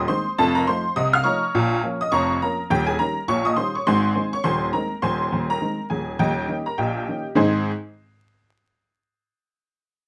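Set in a swung 2/4 at 103 BPM, with a lilt falling on the sixteenth notes, this short ragtime piano cut bounces along in a lively, jaunty mood in A-flat major. A honky-tonk upright piano plays solo, its detuned, jangly voice sitting up front with a woody, vintage character. The part ranges from Eb1 in the deep bass up to F6, filling the keyboard from low to high. The harmony moves through a classic circle of dominant chords, F7 to B-flat minor to Eb7 and home to A-flat, before turning back through Eb7 and landing on A-flat again at 7.4 seconds as a new section begins. The piano stops at 7.7 seconds, and the fragment, lifted from a longer piece, ends shortly after. A moderate studio room gives the sound a natural sense of space, while vinyl crackle adds an aged patina.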